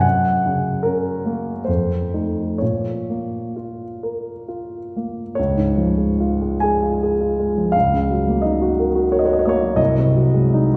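In a rubato 3/4 that drifts between 61 and 89 BPM, this fragment of a romantic classical nocturne for solo piano opens in Bb minor with a yearning, mournful air, then turns to Db major at 5.4 s. The dark, mellow grand piano sits up front and spans C2 to Ab5, playing alone for the full 10.8 s. A wet concert-hall reverb with a 2.2-second tail surrounds it, and the room is heard from further back, with a dulled, softened top end.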